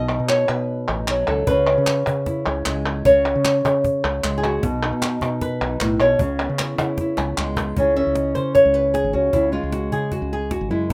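Up front and boxy, a fingerpicked flamenco guitar leads this fiery, intense flamenco piece in C# minor at 153 BPM, moving between B and C#m chords over a dark, round fretless electric bass with a hollow-body tone. Crisp, saturated palmas hand claps sound until 7.8 seconds. A close, dry cajon with faint snares enters at 1.5 seconds and plays a short fill before the guitar takes a solo, all in a rough home-demo mix with moderate studio reverb.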